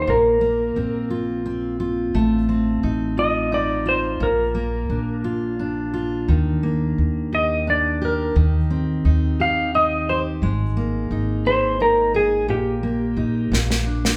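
A clean, dark-toned lap steel guitar sings the melody from the start over a full-bodied fingerpicked steel-string acoustic guitar and a woody pizzicato upright bass in this swaying, tender six-eight pop ballad in Eb major at 58 BPM, played live by the band in one room with a wet, large studio reverb, before an airy snare drum fill enters at 13.5 seconds to close the passage.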